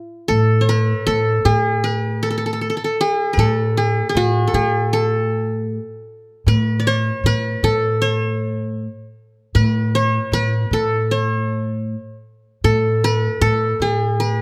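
A bright, plectrum-plucked qanun opens this passionate, festive Arabic maqam ensemble piece in A maqam huzam, joined at 0.3 seconds by a woody, growly pizzicato upright bass. The tempo sits at 78 BPM in a straight 4/4, with tuning referenced to A4 = 442 Hz. The qanun carries the melody between E4+40c and D5-40c, its triple strings giving a bright-edged attack, while the steel-strung bass holds the low end on A2. Both instruments sit up front at matching levels, captured by close, detailed microphones in a light reverb. The whole 14.4 seconds forms a single section cut from a longer piece.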